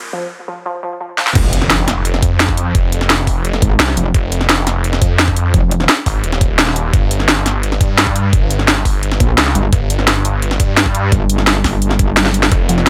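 Dark technical drum and bass at 172 BPM in F minor, futuristic and mechanical, opening on a warbly, dusty pluck arpeggio with a filter sweep and tape echo before a drum fill at 1.2 s launches the drop at 1.4 s, where an overdriven kit with cracking snare and bright hats and a snarling distorted saw bass hit up front alongside a knocking electronic kick and a background impact, joined by a metallic FM wobble bass in two stretches, while a very quiet, moody analog pad surfaces only at 12.5 s in this dry excerpt cut from a longer piece.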